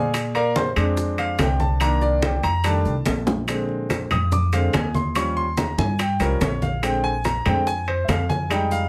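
Sophisticated and lively, this 143 BPM Afro-Cuban jazz cut in Bb mixolydian sets a clear, polished concert grand piano soloing up front over Bb7, Cm7, F13 and Eb7 changes. A thumpy pizzicato upright bass with steel strings sits beside it, while thick-skinned, low-tuned congas struck with hard hands stand out as the loudest of the percussion. Ringing metal-shell timbales join in, round bongos, woody claves and grainy maracas fill the background, and a short drum fill from 3.1 to 3.5 seconds turns the groove back to the top under a moderate studio reverb.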